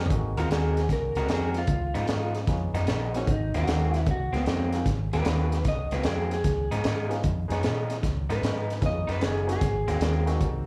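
Electric slide guitar, slightly broken-up, carries a soulful solo from 0.4 seconds over a laid-back electric blues shuffle at 152 BPM in Ab mixolydian. It is backed by a lo-fi riff on electric guitar through a small old amp, a round, foam-muted vintage fingered bass, a gritty breakbeat kit with a high-tuned snare and punchy kick, and a woody, slightly detuned upright piano in the background, with slapback echo on the guitars and piano, all heard live through a club PA with small-room reverb in this excerpt from a longer piece.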